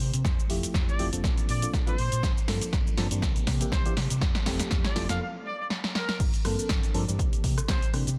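A swung sixteenth-note groove in 4/4 drives this nostalgic, groovy filtered disco house clip, cut from a longer piece, where a punchy analog drum machine with crash cymbal, hi-hat, rim click, shaker and snare, its hats, percussion and cymbals pumping against the sidechain, joins an electronic kick, both re-recorded in a small room, beneath a round, overdriven fingered electric bass. A reedy, phased electric piano heard through built-in speakers carries the chords, and a clear jazz-style trumpet section with light vibrato and tape echo plays the melody, all three filtered and pumping too. Drum fills and a filter sweep shape a build-up, a chordless break arrives at 5.2 seconds, and the drop lands at 6.2 seconds in a dense, heavily limited modern master with light reverb and digital ambience.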